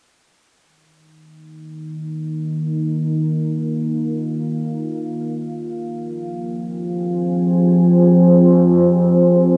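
Deep and meditative, this ambient passage drifts in free time, cut from a longer piece. A single dark ambient pad carries it, entering at 1.6 seconds and holding sustained chords up front in the mix through to 9.6 seconds. Its tone blends detuned sawtooth unison voices with sine and a sub octave beneath, given a slow attack, long release, chorus, a moving notch and a gritty vintage 12-bit sampler character. A filter sweep runs across the pad as the harmony moves from Ebadd9 to Fm9 at 5.3 seconds. The whole mix is soaked in a huge, dreamy reverb with a long 8.8-second decay, turning the chords into a moody, enveloping haze.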